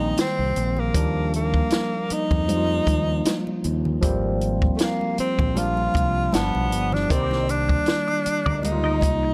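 Dry, close-sounding and cinematic, this smooth fragment of lush 1970s-style soul sets a breathy, vibrato-laden tenor saxophone with tape echo up front over a barky, phased tine electric piano, a round overdriven fingered bass, a punchy compact cocktail drum kit with a high-tuned snare and very quiet, damped congas, while a twangy, clean electric guitar riff with wah and subtle chorus enters at 7.1 s as the chords settle on Cm9.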